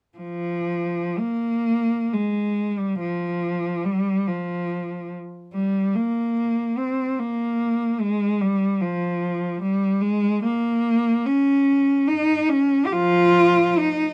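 A single bowed cello sits up front with a rich, focused tone, vibrato and a smooth top as it sings a yearning, mournful line between F3 and G4 in this brief classical passage in F minor, moving in a free, rubato 3/4 at roughly 56-75 BPM and tuned to A4 = 439 Hz, captured by close, detailed microphones in a dry space from 0.2 to 14.1 seconds.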